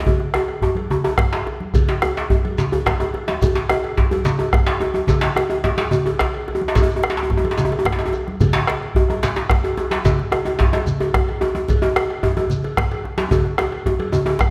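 Cut from a longer piece, this powerful, driving West African drum ensemble opens on a pair of djembes, one cracking and up front with metal rattles and a vintage, band-limited tone, the other tight and very quiet. A deep, dark bombo, bright congas and a distant metallic cowbell join in a drum fill, then a grainy, mellow shekere enters in the background at 1.7 s, while the 12/8 groove gradually speeds up in a moderate recital-hall reverb and closes on another fill from 13.3 s.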